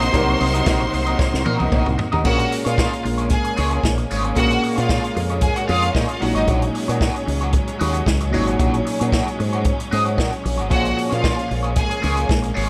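This cut from a longer disco track sits in a small room with light reverb, its punchy kick and fingered bass placed up front. The mood is driving and danceable in a straight four, moving from Cm7b5 to Bbm7 and then Ab7sus4. The vintage acoustic drum kit has dark cymbals, a medium-tuned snare and a rolled-off top, and it plays a fill at 1.2 seconds, while a very quiet, band-limited cowbell adds a metallic tick in the opening seconds. Underneath, the bass runs through an envelope filter, a bright, twangy electric guitar at the edge of break-up works a wah, and a concert grand piano with deep low notes sits in the background. A distant symphonic string section holds lush bowed chords throughout. Above it a focused studio string section with vibrato and a smooth top carries a second line, dropping out at 6.5 seconds and returning at 10.7 seconds.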